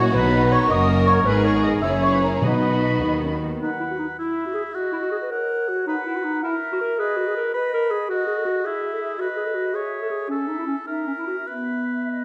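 A dark, softly attacked clarinet carries an up-front solo line throughout this cheerful, graceful excerpt from a quick classical-period orchestral movement in B major and 6/8 (97-111 BPM in dotted quarters, played with rubato), alongside an airy, mellow small flute group, while lush violins sing the smooth vibrato melody over a second violin line with portamento, woody violas in the background, distant horn chords, intimate cellos, expressive double basses and very quiet, round soft-mallet timpani until about 3.6 s, when a close-miked, lightly vibrato oboe takes up a second line to the end at 12.2 s, all set in a moderate scoring-stage reverb.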